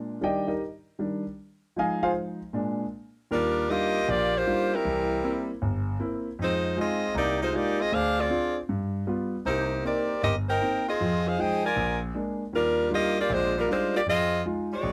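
Jazz with an energetic, brassy swing feel, this excerpt opens with a clear, intimate concert grand piano playing alone, its deep bass and audible action noise caught up front by close, detailed microphones, until a warm, vibrato-rich saxophone section enters with the melody at 3.3 seconds over the piano's accompaniment, all set in light reverb.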